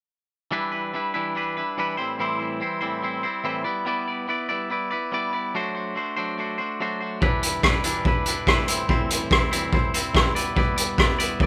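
A rough, lightly reverberant home-demo sound frames this moody, bittersweet indie rock cut in E minor at 144 BPM, where a bright, clean, twangy electric guitar riff moves through Em7, Am7, G6 and D7/F# from 0.5 seconds, joined at 7.2 seconds by an up-front, gritty, saturated garage drum kit with a boomy kick, hi-hat and rim click.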